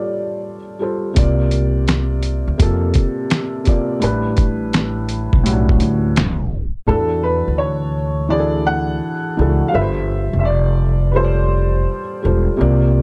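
A gritty, overdriven sampler-style drum kit sits up front in this cosy, dreamy lo-fi hip hop excerpt, its thumpy kick, fat snare, hi-hat and finger snaps carrying a swung, compressed groove from 1.2 seconds. A woody pizzicato upright bass with dark gut-string tone enters alongside the drums and holds the low end through to the close. Throughout, a felt-muted upright piano supplies soft, mellow, intimate accompaniment over lush suspended ninth chords, its sound filtered and coloured by cassette tape and plate reverb. A second upright piano, slightly detuned and boxy, offers a brief melodic phrase at the very start, then returns with the melody in the second section after a tape stop at 6.2 seconds brings the drums to a halt. The dark production, light reverb and lossy compression artefacts give the whole piece a dusty, homespun glow.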